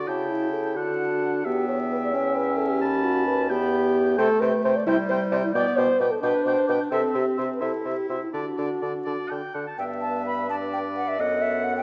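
Classical-period wind quintet music in a quick, rubato 6/8 at 87 BPM, cheerful and graceful, settling into G major at 4.2 s in this short section cut from a longer piece. A hollow, silvery flute carries the melody with vibrato and a close presence from 0.1 s, while a distant oboe with light vibrato plays a second line above the clear clarinet and the soft-attacked, dark French horn. The bassoon adds a warm bass beneath, all set in a wet concert hall with vinyl crackle.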